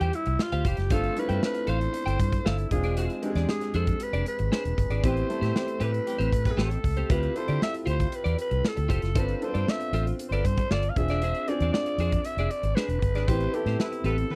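A growling, raspy alto saxophone carries the melody through this short cut from a polished 1980s jazz-funk pop track, its gritty vintage tone touched with vibrato and a slapback echo that suits the urban, nocturnal mood. Underneath, a boxy baby grand piano plays chords through a lush chorus while a clean, compressed electric guitar picks a scooped riff colored by analog chorus. A dark, round, foam-muted fingered bass sits up front with a punchy modern studio drum kit of kick, medium-tuned snare, hi-hat and toms, holding a straight 4/4 groove at 116 BPM in A minor. The band hits accents starting at 5.0 seconds, and a mellow, tight horn section with octave doubling slips in briefly at 5.5 seconds and again near the close. Harmonies cycle through Dm11, G9sus4, E7b9b13 and Am9. The dry, close sound has the intimate feel of a 1970s-style studio room.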